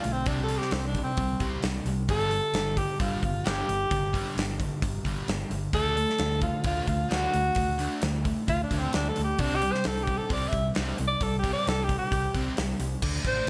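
Hard rock with a powerful, swaggering mood, cut from a longer piece and driven by a straight 4/4 pulse. A breathy alto saxophone takes the lead, soloing from the start to 13.0 seconds and sitting up front with a soft attack, light vibrato and an intimate, whispered, pop-style tone. Behind it, an overdriven semi-hollow guitar with ensemble chorus and a sludgy distorted guitar play riffs in the background, the sludgy guitar stopping at 13.0 seconds. A dark, round hollow-body short-scale bass, fingered and amped, gives a punchy low end. A gated 80s drum kit with a punchy kick, medium-tuned snare, hi-hat and crash sits up front in a big, airy gated room. The bright 1980s-style digital production adds a moderate plate reverb and small room ambience, while the chords move from C5 to G5, D and back to C5.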